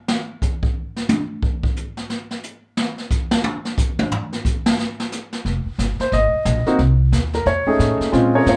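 Heard from further back in a club-sized room with a moderate reverb, this cool, late-night jazz piano trio excerpt swings in 4/4 at 179 BPM. A roomy brush drum kit with a boomy kick plays alone from 0.1 seconds, and a woody, growly pizzicato upright bass enters at 5.4 seconds as the music settles into F minor over Fm7, Cm and F7alt. A natural-sounding baby grand piano with a short sustain takes the melody from 6.0 seconds.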